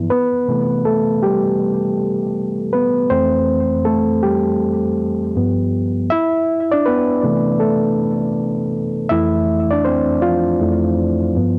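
A gritty, reedy electric piano, overdriven through a combo amp and sitting up front, plays alone throughout this cosy, dreamy hip hop fragment at 80 BPM with a swung 16th-note feel in C major, moving through C6, Fmaj9 and G7 under a filter sweep until 6.1 seconds before settling onto C69 and Fmaj7, its sound colored by cassette tape, a low-pass filter and analog delay in a light-reverb home recording cut from a longer piece.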